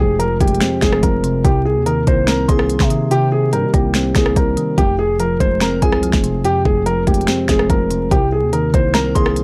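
A half-time trap beat at 144 BPM drives this dark, hard-hitting hip hop clip in C minor, with an overdriven drum kit entering at 0.2 s up front with a knocking kick, sharp snare, crisp hats, finger snaps and rim clicks, over a growling, buzzy 808-style bass. A mellow, intimate concert grand piano carries the melody, its action noise audible, while soft, round electric-piano-like synth keys with chorus fill in the harmony as the chords move between Fm and Cm7. A faint, tinkling FM bell with a warbling chorus and analog delay drifts in the background in brief phrases from 2.3 s, all captured in a dry, gritty recording with vinyl crackle.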